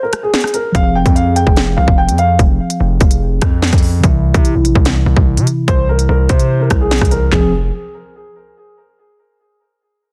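Ominous and cold, this half-time drill excerpt opens with a dark, boxy grand piano melody with delay. From 0.1 seconds a sampler-gritty drum kit with a hard-clipped kick, sharp snare, crisp hats, handclaps, rim clicks and toms joins in, and from 0.7 seconds it drives alongside a punchy, heavy 808 bass and a mellow tine electric piano with phaser, moving from Fm to C under a dense, heavily limited master with light digital reverb.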